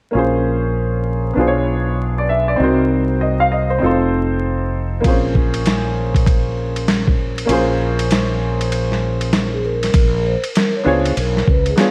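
This nocturnal, smoky jazz-hop excerpt opens at 0.1 s with a woody, slightly detuned upright piano in Bb minor, its long-sustaining vintage chords moving through Bbm9, Bdim7, Cm7b5 and F7. A punchy fretless electric bass, heard direct and amped, sits up front beneath it in a low register. At 5.0 s a gritty, pitched-down boom bap sampler kit arrives with a thumpy kick, medium-tuned snare, hi-hat and ride cymbal, compressed and tape-warm, swinging at 98 BPM in 4/4. The kick drops out for a stretch before the last section turns to Bbm7. At 9.3 s a mellow vibraphone played with soft mallets, motor off, takes the melody with a metallic, ringing tone, close-miked and touched with delay. A lush hall reverb and vinyl crackle soak the whole mix in a dreamy haze.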